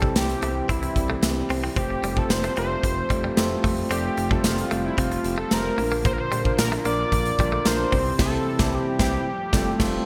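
Bright 1980s-style digital production with moderate plate reverb frames this romantic, uplifting pop excerpt in straight 4/4. A bold, warbling octave-doubled lead carries the melody with chorus and delay over a bell-like tine electric piano, a shimmering, very quiet pulse-width pad, a smooth gliding synth bass and a twangy, direct-recorded clean electric guitar riff that sits in the background and stops at 8.0 seconds. A big, up-front rock drum kit with punchy kick, cymbals, tambourine and gated reverb plays through chords moving from C to Fadd9 and Bb, and the band hits an accent from 8.2 seconds to the end.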